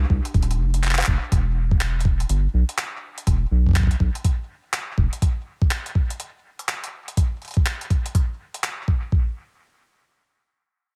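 IDM at 123 BPM with a 16th-note swing, this intricate, eerie fragment of a longer piece opens on a deep, dark, round analog bass sitting up front until 5.1 seconds, beneath a thumpy, gritty electronic kick and a pitched-up, compressed jungle sampler-style kit of bongos, handclaps and hi-hat soaked in dub echo, both drum parts tape-warm and re-recorded in a large room within an otherwise dry, echo-heavy mix that shifts into a new section at 9.1 seconds.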